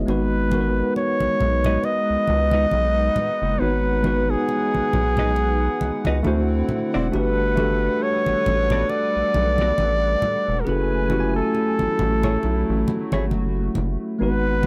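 A slow 68 BPM groove in 4/4 swings its sixteenths gently, setting a smooth, late-night R&B and neo-soul mood in this short cut from a longer piece. A rubbery, bouncy square bass sits up front with a fast filter pluck, while a worn, slightly out-of-tune tine electric piano carries the accompaniment and low-tuned, damped congas add thick-skinned percussion. Over them a breathy flugelhorn takes the solo melody, close-miked with a touch of vibrato, and a picked, compressed hollow-body jazz guitar plays a second line from 1.7 to 13.3 seconds. In the background a hollow, flute-like pad holds detuned sustained chords through a chorus effect. The harmony moves from G#m7 to D9, Gmaj9 and F#m9, and the dry, close 1970s-style studio sound keeps the band intimate.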